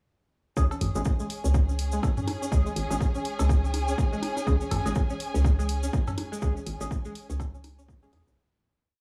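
A punchy, up-front four-on-the-floor kick drives this cool, hypnotic minimal techno piece at 123 BPM with 59% swing on the 16ths, joined by programmed electronic hats and backbeat, clicking electronic cowbell, tom and bongo blips in cross rhythm with tape echo, and close, grainy hand-played cabasa sixteenths. A hollow, bouncy, sidechain-pumped FM bass riff sits beneath a twangy resonator pluck looping a 6-step sequence that drifts against the bar through filter sweeps, chorus and tape echo, while sparse organ-like stabs with cassette-tape colour and echo move one chord shape in parallel over a distant, dark bowed chamber string section with vibrato and slowly shifting chords. The groove runs from 0.6 seconds in a dry, gritty small-room sound and fades out from 5.8 seconds.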